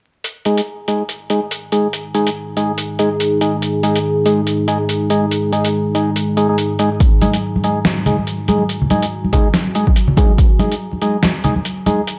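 A punchy, layered electronic kick lands up front between 7.0 and 10.5 seconds in this meditative, brooding deep dubstep fragment with a swung half-time feel, cut from a longer piece, where gritty, pitched-down sampler-style trip hop drums with overdriven hi-hat and snare and a hollow, mellow organ stab with chorus and dub echo both carry filter sweeps throughout, a deep, detuned sawtooth pad with a sub octave and chorus joins at 2.1 seconds, and bright, thin-skinned acoustic congas enter at 7.2 seconds, all set in a dark production with spring reverb and vinyl crackle.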